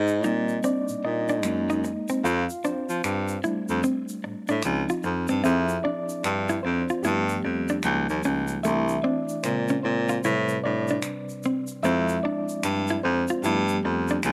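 A swung shaker and finger-snap groove underpins a sensual 75 BPM neo-soul R&B feel in 4/4, where an up-front baritone saxophone carries the bass with vibrato and a smooth top, a mellow, reedy electric piano with fast tremolo heard through its built-in speakers takes the solo over chords moving from Abmaj9 to G9, and a dark, compressed hollow-body jazz guitar adds a clean second line, set in a small room with moderate spring reverb.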